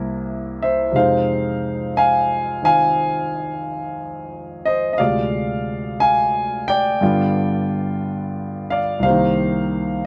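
A slow 4/4 swing at 59 BPM sets a relaxed pace for this short solo jazz excerpt, cut from a longer piece and played entirely on a concert grand piano spanning C2 to Ab5. The piano sits up front and intimate, with deep bass, long sustain and audible action noise in a light reverb, while the harmony moves from C7 and Fm7 through Dm7b5 and G7 to settle on Cm7 at 9.0 seconds. The mood is easygoing and warm throughout its 10.1 seconds.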